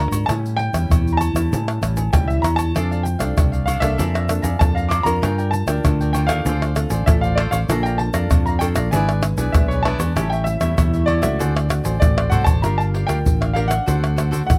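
Samba and choro in D minor at 97 BPM, this short excerpt carries a yearning, nostalgic mood over a straight 4/4 feel. A clear concert grand piano with natural tone and deep bass carries the melody in its upper register, while a dark, small-sounding nylon-string guitar fingerpicks the accompaniment beneath it. Up front, a growly, amped fingered electric bass anchors the low end alongside a close, dry percussion section of agogo bells, tube shaker, tight surdo, pandeiro and tamborim played with soft hands. A crisp, picked cavaquinho joins at 2.7 seconds, adding its own warm accompaniment as the harmony moves from A7 through Gm7, Dm7 and E7/G# back to A7 and D7. A drum fill at 12.2 seconds leads into a new section at 12.6 seconds, and the close, detailed recording with little reverb keeps every part intimate and present.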